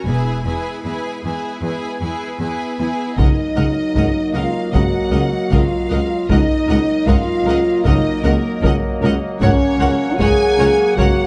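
This cut from a longer epic orchestral film score opens on an E chord at 77 BPM in a triumphant, heroic build-up: clear, lush violins and rich violas sit over focused cellos and double basses in the background, while warm French horns hold sustained chords. A vibrato-laden violin melody enters at 2.4 seconds, and at 3.2 seconds the harmony shifts to Ebm/Db as hard-stick taiko drums in a small room join bright trombones, mellow, distant woodwinds and a roomy tuba. Light reverb and close, detailed microphones keep each section defined as the chords move to Gb/Db at 9.4 seconds.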